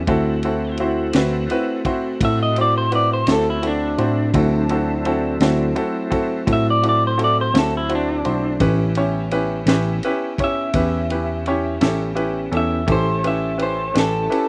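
Laid-back and gritty, this slow blues in 12/8 moves at 56 BPM with a straight feel, built on a D7 chord that shifts to A7 at 8.6 seconds. A slightly broken-up, compressed electric guitar through a small old amp carries a clean, fingered solo up front, joined by a clear baby grand piano accompaniment and a tine electric piano playing the bass line through a combo amp. A crunchy, saturated breakbeat kit with a punchy kick, high-tuned snare and dark ride cymbal sits beside a smooth tonewheel organ holding sustained chords in the background with chorus vibrato and a slow rotary speaker, all in a dry sound cut from a longer piece.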